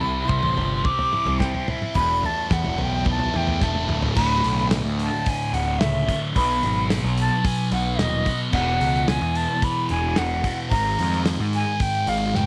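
The recording has little reverb around a hazy, hypnotic stretch of psychedelic rock in a straight 4/4. A thick, bright fuzz guitar, double-tracked and up front, carries the riff through distortion and a phaser, while a picked electric bass, overdriven and fuzzy, sits equally forward beneath it. Above them a breathy metal flute plays the melody with vibrato, a soft attack, lifted highs and an unsteady tone, each phrase trailed by slapback echo. A damped 70s acoustic kit with dark cymbals, a medium-tuned snare and a tight kick keeps time, and a drum fill from 3.6 to 4.2 seconds leads into the second section. The chords move from C and Esus4 to D5, B5, Esus2 and G#5, and the passage is cut from a longer piece.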